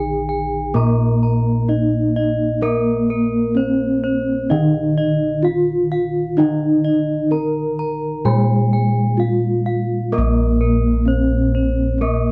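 Heard up close in a dry 1970s-style studio with light reverb, this brief excerpt of Javanese gamelan in Bb slendro moves at a stately 64 BPM in a straight 4/4, carrying a ceremonial, shimmering mood. Three bronze metallophones sound together throughout the 12.3 seconds, carrying a melody between Bb3 and Bb4, a lower accompaniment, and higher arpeggios reaching up to Bb5. One metallophone, struck with padded disc mallets, is mellow and soft, its paired tuning producing shimmering beats with a boxy small-room colour. Another, played with a wooden mallet, rings airy with the same beating shimmer, while a third, struck with a horn mallet, sounds dark and smooth. Underneath, bossed gongs sit up front as the bass, round and beating in their bronze resonance.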